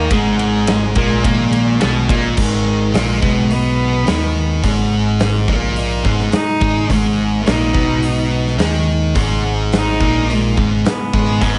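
A distant, bowed cello sings an expressive melody with vibrato and portamento over an up-front, sludgy distorted guitar riff, a growly overdriven bass, bright, twangy twelve-string arpeggios with lush chorus set in the background, a crunchy overdriven guitar riff and a big-room arena drum kit with a punchy kick, in this angsty, cathartic slice of quiet-loud alternative rock with light reverb, where the crunchy guitar stops at 2.4 s as the cello solo begins and returns at 11.4 s.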